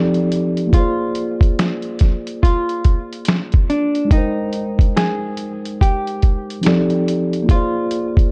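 A dusky, softly reverberant mix with a digital ambience opens this 8.3-second cut from a longer lo-fi hip hop piece, hazy and nostalgic at 71 BPM with a swung sixteenth-note feel. Up front, a compressed, muffled, pitched-down sampler-style drum kit enters at 0.1 s with a thumpy kick, medium-tuned snare, hi-hat and finger snaps, alongside a mellow, clean tine electric piano playing accompaniment through a low-pass filter. A picked vintage hollow-body jazz guitar, also filtered and shadowy in tone, carries the melody over chords moving from F13 through Bb9 and Abmaj7 and back.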